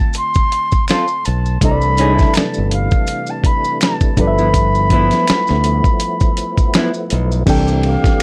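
A relaxed 82 BPM groove in 4/4 with a gentle sixteenth-note swing drives this short neo-soul and R&B excerpt in C major, set by a gritty, compressed sampler-style drum kit with a thumpy kick, medium-tuned snare, hi-hat, ride and crash sitting up front, plus faint maracas and finger snaps heard in a small room. A mellow concert flute carries the melody high in its range with an airy, straight tone and soft attack, while a reedy, worn electric piano, slightly out of tune and heard through its built-in speakers, supplies the accompaniment from the start. A dark, clean hollow-body jazz guitar enters at 0.9 seconds as a second line, and a bright, direct fingered electric bass follows at 1.3 seconds, anchoring the low end up front. At 1.6 seconds a fat tonewheel organ joins with sustained chords, its key click, chorus vibrato and slow rotary speaker adding gentle motion. The harmony moves from Dm7 through C69 and G13 to C6, and plate reverb on the flute, piano, guitar and organ lends the warm, laid-back mood a soft glow.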